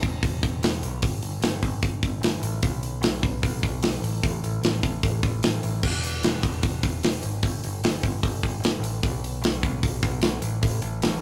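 A tight, straight 4/4 punk rock drive at 150 BPM opens this rowdy, upbeat excerpt, with an up-front acoustic metal kit of crash, hi-hat, tight kick and medium-tuned snare under bright cymbals, alongside a growling, overdriven picked electric bass ranging from E1 to B1, all caught in a rough rehearsal-room recording with tube saturation and light reverb.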